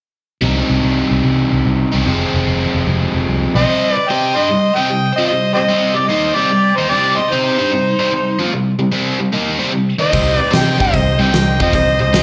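Blues rock and southern rock with a gritty, heavy swing, cut from a longer live club set heard through the venue's PA: a biting, double-tracked overdriven guitar riff with slapback echo opens alongside a dark, foam-muted picked bass; at 3.6 seconds an up-front amplified harmonica solo with tongue slaps, scooped notes and light vibrato arrives together with a nasal parked-wah lead guitar line; and at 10.1 seconds the bass returns as a huge arena drum kit with a fat snare and punchy kick joins, while a thick overdriven tonewheel organ with key click and lush chorus holds sustained chords in the background.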